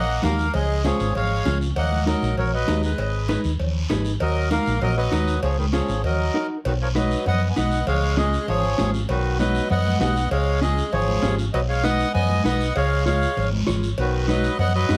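This lightly reverberant cumbia excerpt puts a reedy, close-miked accordion up front, its slow beating and full, dry tone carrying a passionate melody. Beneath it, a growling tenor saxophone plays a second line with vibrato, its gritty, raspy edge capped by a smooth top. A dark, round hollow-body short-scale electric bass sits up front to anchor the driving groove. From 0.2 s, a mellow, clean, compressed electric guitar adds fingered accompaniment, while bright, soft-handed congas, ringing metal-shell cowbell and timbales, and a distant guiro fill the background with a large-room, live feel. After a brief break at 6.3 s, the harmony shifts at 6.6 s from an Ebm-centred opening to an alternation of B and Db chords.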